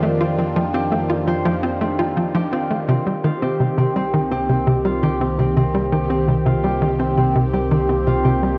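Worn, warbling cassette-tape sound and a moderate plate reverb frame this hypnotic, expansive cut from a piece of sequencer-driven ambient space music at 84 BPM in C minor, where a hollow, bouncy square-wave pluck riff with chorus and delay sits up front beside a swirling, phased sawtooth pad holding sustained chords, while a mellow concert harp rings out arpeggios through delay and a detuned, evolving analog drone supplies the bass as the harmony moves from F7sus4 to Cm7 at 2.9 s.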